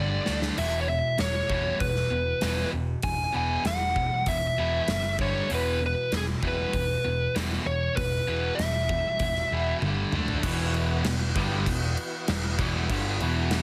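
Hard rock, powerful and energetic and cut from a longer piece: a biting, up-front lead guitar carries the melody until 9.8 s over riffs from a bright distorted electric guitar and a sludgy distorted guitar in the background, a growly picked electric bass and a gated 80s drum kit with a punchy kick in a stone room, then at 10.4 s a double-tracked overdriven electric guitar riff arrives with an overdriven tonewheel organ holding gritty chords through a slow rotary speaker, the whole mix given a heavily compressed radio sound.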